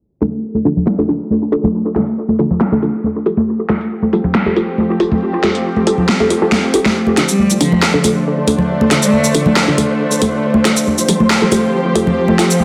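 Deep dubstep in D minor at 138 BPM with a brooding, dark half-time feel, cut from a longer piece, where muted, detuned dub chord stabs treated with phaser and dub echo move between Dm and Fadd9 over an up-front electronic kit with a huge snare and metallic hats, dry close-miked congas, a nasal bowed-like drone entering at 4.0 s, a rich, smooth cello melody from 7.3 s to 9.5 s, and a grainy, flickering texture in the background as a drum fill at 6.5 s leads into a build-up, all under vinyl crackle and a dense, heavily limited master.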